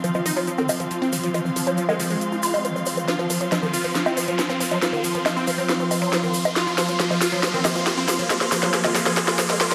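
From the opening, this driving, hypnotic psychedelic trance build-up at 138 BPM in F phrygian stacks an up-front, overdriven electronic drum kit with a cracking snare, bright hats and bongos, a punchy detuned supersaw stab melody through phaser and tape echo, a woody, warbling wave-folded pluck riff with chorus, cassette tape and dub echo, an evolving, morphing wavetable pad with chorus, lush bowed strings with vibrato, a grainy tube shaker and an electronic riser in the background, along with a filter sweep on a synth arpeggio, all in a wet digital room reverb, with a drum fill running from 3.1 seconds.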